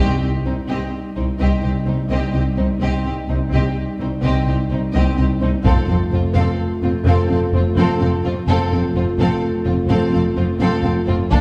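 A wet scoring-stage reverb, heard from further back in a small room, gives this dark, epic film-score cue a roomy, distant glow. Moving at 85 BPM in a straight 12/8 in C dorian, the cut builds steadily from a full-band accent at the very start, shifting from C minor to F at 5.7 seconds. A close, smooth studio violin section carries the melody with light vibrato, while a focused symphonic violin section sings a lush second line beneath it and an intense viola section fills in the accompaniment. Mellow French horns hold classical-style sustained chords, and the low end rests on a background cello section and a woody double bass section, both bowed with vibrato. A taiko ensemble struck with heavy sticks booms in the background, entering at 5.7 seconds and landing a final hit at 11.3 seconds as the passage breaks off mid-build.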